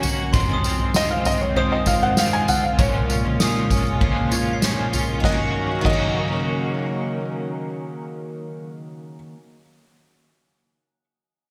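Bright, 1980s-style digital production bathes this melancholic, haunting dream pop excerpt at 98 BPM in Eb dorian in a lush hall reverb, as a shimmering, octave-doubled twelve-string acoustic guitar picks arpeggios with delay over a slightly broken-up, twangy electric guitar carrying tremolo and chorus, and a warbling, lo-fi tape-like pad holds dark sustained chords. A soft, muted upright piano with audible action noise carries the melody from 1.0 s through delay, while a sparkling glockenspiel with brass mallets rings in the background. Up front, a big-room drum kit played with soft mallets, with a boomy kick and gated reverb, drives the Fm7 and Bbm7 changes until it stops at 6.0 s, after the move to Ebm7.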